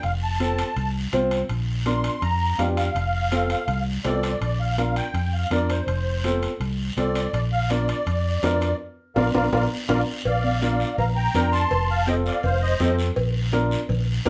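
A reedy, shimmering musette accordion carries the melody in this sunny, danceable cumbia, its dark, smooth tone set in a wet studio ambience until it stops at 13.0 seconds. An amped electric bass sits up front, and a woody, polished upright piano comps from 0.4 seconds. High-tuned congas played with hard hands and metal-shell timbales and cowbell keep a close, dry pulse in the background, joined by a raspy guiro. The band plays live over alternating F and Bb chords, hitting a group accent with a drum fill that leads into a new section at 10.3 seconds, where an F7 chord resolves back to Bb.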